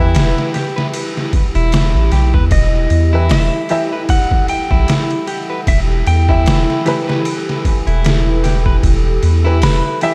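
Trip hop with a smoky, brooding mood and a swung 16th-note feel, cut from a longer piece that rests on a single E minor chord throughout. A deep, round dub sub bass with tube saturation sits up front beside a gritty, pitched-down sampler drum kit, overdriven and re-recorded in a large room, with a thumpy kick, snare, hi-hat and ride. Over them a clean lap steel carries the melody with slide, volume swells, 12-bit sampler grit and tape echo, while a woody, slightly detuned upright piano with tremolo, a dark chorused analog pad and a picked electric guitar playing arpeggios through delay fill in beneath, all in light reverb.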